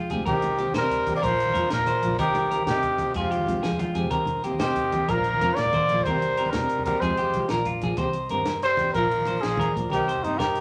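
Warm and danceable, this highlife guitar band excerpt in a straight 12/8 puts a breathy, mellow trumpet up front with light vibrato and scooped notes, while a raspy tenor saxophone carries a gritty second line in the background. Twangy clean electric guitar arpeggios and a fingerpicked nylon-string guitar with audible finger squeak ride over a round, dark fingered bass, low-tuned congas played with soft hands, and a compact cocktail drum kit with a high-tuned snare and punchy kick that fills at 7.2 seconds. A reedy, overdriven combo organ holds very quiet sustained chords beneath, and a wet studio reverb surrounds the band as the harmony circles Cm7, Bb and Fmadd9.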